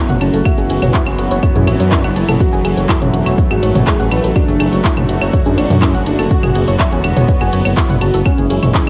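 Dusty, tape-worn and lightly reverberant like a home cassette recording, this cinematic, dramatic melodic techno excerpt drives a heavy layered kick and a deep, rumbling detuned saw bass pumping beneath a kit of claves, handclaps, hi-hat, ride cymbal and toms re-recorded in a large room, while a bright, evolving resonant pad swells with chorus over Esus2, D and C#m chords held above an F# bass note, a warbling lo-fi pluck spins delayed arpeggios, a fat, dark analog lead sings a vibrato melody in the background, and a tense, string-like bowed drone enters very quietly at 0.3 seconds.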